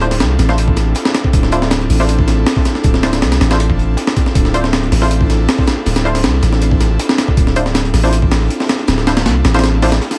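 Atmospheric and raw, this drum and bass excerpt at 159 BPM in D minor rests on a single Dm9 chord, with an up-front sampler-style breakbeat kit of thumpy kick, high-tuned snare and gritty, compressed small-room grit, a very quiet, dark, saturated acoustic break beneath it, a deep, mellow, tube-saturated 808-style sine bass up front, muted filtered dub chord stabs with chorus and dub echo, and an airy, breathy, detuned pad with chorus hovering in the background, all laid over a bed of vinyl crackle.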